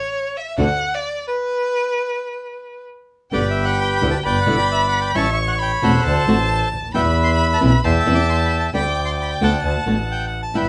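Nostalgic and playful, this rubato tango excerpt at 133 BPM in 4/4 opens with a distant, expressive violin alone, bowed with vibrato and portamento, before a flamenco guitar enters at 0.6 seconds fingerpicking fresh-stringed accompaniment above a bowed double bass that is biting, nasal and earthy, while a lush, focused studio string section adds brief background stabs. After a stop from 1.5 to 3.3 seconds, a reedy, close-miked bandoneon takes the melody, dry and full at the front, as the violin carries a second line over chords moving from Em7/G through A7, D7 and C/E to a final D. A moderate studio reverb frames the parts, and the strings return with one more stab at 10.5 seconds.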